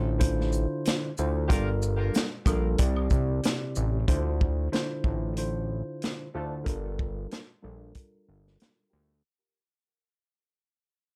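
A mellow tine electric piano with a cassette-tape tint and a fat, detuned analog bass open this tough, reflective boom-bap hip-hop excerpt in D minor at 93 BPM, moving through Dm7, Gm7 and Cadd9 with a 16th-note swing. A vintage drum kit joins with a punchy kick, medium-tuned snare, hi-hat and shaker, while a tube shaker and woodblock sit in the background until 3.9 seconds. A distant, roomy horn section adds jazz-style stabs with light vibrato and delay, returning at 6.3 seconds as the whole piece fades out under a filter sweep from 4.1 seconds.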